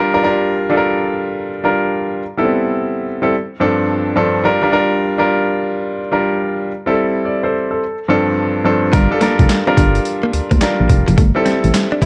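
A clear, polished baby grand piano opens this slick, punchy new jack swing excerpt alone over a swung groove of minor seventh chords, until at 8.9 seconds a round, fast-attack FM bass, a gritty, overdriven boom bap drum kit with a thumpy kick, high-tuned snare, handclaps and hi-hat, and a clean, direct-recorded electric guitar riff with tube saturation and lush chorus tucked in the background all join, under light reverb.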